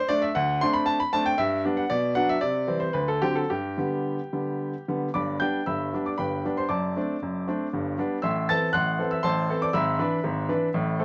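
A classical-period piano sonatina in 3/4, this graceful, playful fragment from a longer piece moves with gentle rubato, its opening phrase returning at 5.2 seconds. A solo baby grand carries everything from its low bass to its high treble, sounding clear, intimate and natural, placed up front with long sustain and audible action noise. Light reverb surrounds it, and the production leans dark.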